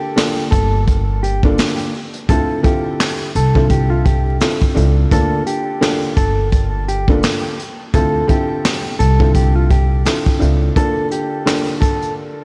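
Dark and moody, this swung 85 BPM boom-bap hip-hop excerpt sets a clean, fingered electric guitar melody with tape echo over a worn, slightly detuned upright piano with audible action noise, a vintage brush kit of tight kick, snare, hi-hat and handclaps, and a woody pizzicato upright bass that drops out at 10.7 s for a closing break, the dreamy mix soaked in lush hall reverb and vinyl crackle as the chords move between Gm7 and Dm7.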